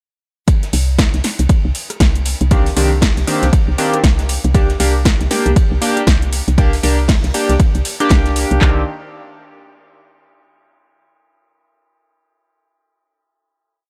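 Deep house at 118 BPM in C minor with a swung 16th feel, smooth and warm, built on an up-front, overdriven electronic kit with a deep four-on-the-floor kick and claps, plus punchy snare, rim and metallic hats, all re-recorded in a large room, while a dark, rolled-off acoustic jazz kit plays a looped breakbeat with edits in the background. A soft, round, woody FM bass holds a dotted-rhythm line on C2 from 0.7 seconds, and at 2.5 seconds a glossy, chorused polysynth enters with syncopated chord stabs that pump against the kick and trail tape echo, sweeping across Cm9 and Gm/C. The groove ends at 8.6 seconds, giving way to a final Cm9 chord in a small room ambience.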